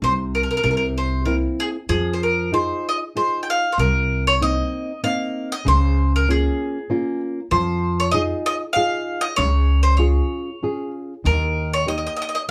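A lightly swung three-beat lilt carries this lively, romantic Italian folk serenade, cut from a longer piece and played live in one room with a moderate studio ambience. Up front, a bright bowl-back mandolin picks the melody on its doubled strings, while a dark, thumb-plucked classical nylon-string guitar accompanies with audible finger squeaks. Beneath them, a woody, thumpy gut-string upright bass plays pizzicato, all three parts sounding from the opening moment to about 12 seconds.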